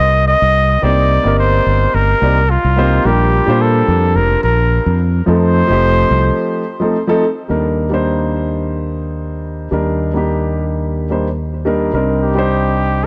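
A clear, softly attacked flugelhorn with light vibrato and delay sings a smooth sunset chillout melody from the start over Cm7, Bb6 and F7, set over a dark, mellow grand piano with deep bass and its own delay, and a round, amped fingered electric bass, all up front. During a short break, the horn falls silent at 6.9 seconds, and piano and bass then carry the harmony onto a long Ebmaj7. The horn returns at 12.2 seconds over a closing Cm9, all within a small room's light reverb and a warm, dark production cut from a longer piece.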